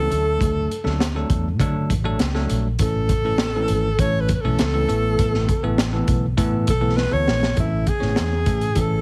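A breathy, close-miked alto saxophone solos with jazzy vibrato from the start, backed by a bell-like tine electric piano and a round, foam-muted fingered bass in this danceable, uplifting slice of 1960s-style soul. A gritty, saturated breakbeat kit with a punchy kick and high-tuned snare sits up front, dropping a fill at 7.0 seconds before the music moves into a new section at 7.6 seconds over a return to the home chord. The sax carries a plate reverb, while the whole mix is squeezed into a heavily compressed, radio-like sound.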